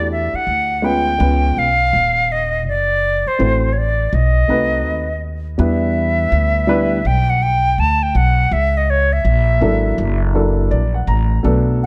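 Jazz-hop with a mellow, nocturnal mood, cut from a longer piece, moving at 82 BPM in E minor with a swung sixteenth-note feel. A pure, soft-attack silver concert flute with vibrato and a slapback echo carries the melody over a dark, short-sustain grand piano and a woody, thumpy pizzicato upright bass on gut strings, with all three placed up front. The harmony runs from Em11 through C#7, F#m7b5 and B7b9, then shifts at 5.6 s toward Em7, C#m and F#7alt, and the piano adds a fill at 10.3 s, all set in a warm small-room ambience with light reverb.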